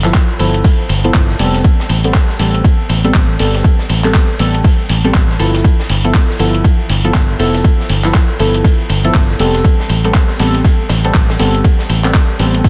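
A hypnotic deep house excerpt at 120 BPM in A minor, swung on the sixteenths, opens with soft, detuned chord stabs pumping through chorus and analog delay over a round, foam-muted fingered electric bass, a gritty, tape-warm sampler drum kit of handclaps, hi-hat and ride, an airy background snare and shaker, and a punchy, overdriven electronic kick entering at 0.1 seconds up front, all cycling between G13 and Am9 in light reverb under a dense, heavily limited master.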